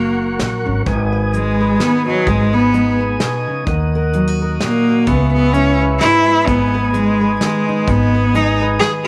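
A rich, bowed cello sits up front, taking the melody with focused vibrato and a touch of tape echo, and it plays a solo from 0.9 seconds to the end of this short cut from a longer acoustic folk piece. The mood is melancholic and intimate, moving in a swung three-time over a minor-key progression. A fingerpicked steel-string dreadnought guitar gives full-bodied accompaniment, while a mellow, flute-like tonewheel organ holds soft sustained chords through a slow rotary speaker, its key click audible. A woody, dark upright bass is plucked underneath, and a brushed drum kit with a medium-tuned snare and punchy kick comes in at 0.4 seconds. Light reverb and small room ambience keep the small band sounding close.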